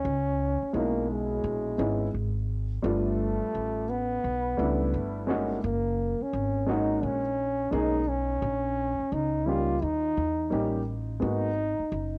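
A breathy, close-miked trombone with light vibrato carries a mellow, jazz-style melody through cassette tape and analog delay over a woody, thumpy pizzicato upright bass with tube saturation, and at 0.7 s a dark, worn, slightly detuned upright piano with audible action noise joins as cassette-toned accompaniment, giving this nocturnal, swung jazz-hop excerpt from a longer piece the intimate feel of a home cassette recording in moderate studio reverb.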